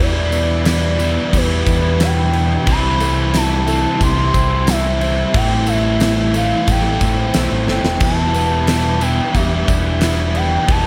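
Wistful and blissful, this shoegaze and dream pop excerpt floats a pure, breathy sine lead with soft attack, vibrato and slapback echo over a dark, shimmering, octave-doubled twelve-string acoustic guitar fingerpicking arpeggios in the background. A biting overdriven guitar, a slightly broken-up electric guitar through a small old amp, and a sludgy, double-tracked distorted guitar stack their riffs on a round, punchy fingered bass moving through Em7, C6, Am7 and back to Em7. A huge arena drum kit with bright cymbals, a fat snare and a punchy kick enters at 0.3 s alongside a jingly, close tambourine, and throws in a fill at 7.7 s, all in a light reverb.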